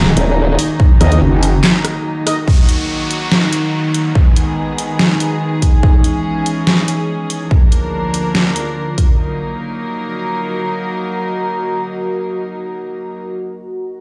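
Heavy wobble dubstep in a half-time feel, aggressive and dark, opening on a drop where a growling, formant-filtered bass and a metallic, saturated FM wobble bass snarl up front over a punchy, tape-warm kick and an overdriven kit of deep snare, handclaps, hi-hat and rim click. Clear brass stabs ring with dub echo in the background, while a dark, sul tasto string section sustains chords and a deep, detuned sawtooth pad adds texture, both under sidechain pumping throughout. After a break at 1.6 seconds, a downlifter sweeps in at 2.5 seconds, and the drums drop away at 9.1 seconds, leaving strings and pad to carry the close in a large reverberant space.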